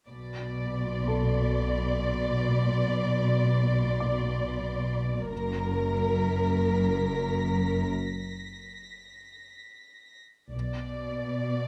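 Ominous and uneasy, this short cinematic suspense cue drifts in free time in B Phrygian, cut from a longer piece. A dark violin section carries the melody up front, its soft-attacked, vibrato-laden line sliding between notes with portamento. Beneath it, a cello section and an up-front, woody double bass section hold the low end in lush bowed tones. A high violin section adds a smooth-topped texture far above, while a concert grand piano sits in the background from 1.1 seconds, intimate and polished, with audible action noise and deep bass. The harmony moves from B minor to F-sharp and back to B minor at 10.5 seconds, after a break from 7.9 seconds, all captured with close, detailed microphones and light reverb.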